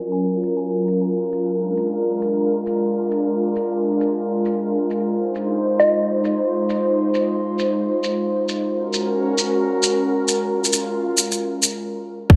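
A tape-warm, up-front shaker drives this swung, wistful, ghostly future garage excerpt beneath an airy, breathy pad whose sustained chords pump with sidechain and chorus under a long filter sweep, while a woody, round mallet-like pluck, treated with chorus, phaser and tape echo, sounds a single note at 5.8 s, and after a brief break a tight electronic kick and a dark, detuned saw bass with tube saturation arrive together at 12.3 s, the whole set in a wet recital hall space.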